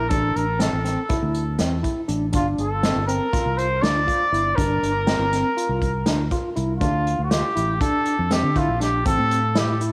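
A mellow, lightly vibrato-tinged trumpet carries the melody through cassette-tape grit and tape echo, then takes a solo from 6.8 seconds in this brooding, intricate progressive instrumental in 9/8 at 242 BPM (eighths) in G dorian, supported by barky, overdriven electric piano arpeggios with fast tremolo, a round, dark fingered electric bass, and a roomy unplugged drum kit played with bundle sticks over a punchy kick, all in a small-room home cassette recording that moves from Am through Gm7 to Dm and back to Am in a fragment cut from a longer piece.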